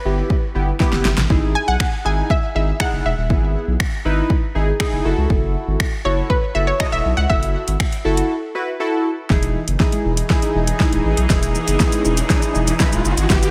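Dance-pop excerpt with a euphoric, carefree glow, where a bright, warbling analog pluck lead rides over chorus-and-phaser analog keys, a thick saturated sub bass pumping under a deep house kit of deep kick, fat snare, metallic hats, shakers and finger snaps, before a break at 8.3 seconds gives way to a build-up in which a very quiet dark pluck arpeggio, a lush supersaw pad and a background riser enter under light reverb.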